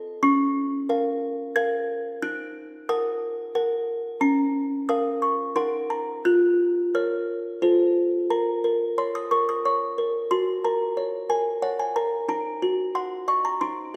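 A fragile, wistful classical lullaby in a gentle waltz metre, carried alone by a delicate, tinkling music box with a large-box body and slightly out-of-tune plucked notes sitting up front, ringing through a lush scoring-stage reverb as its minor-key harmony drifts into a new section at 8.3 seconds in this short cut from a longer piece.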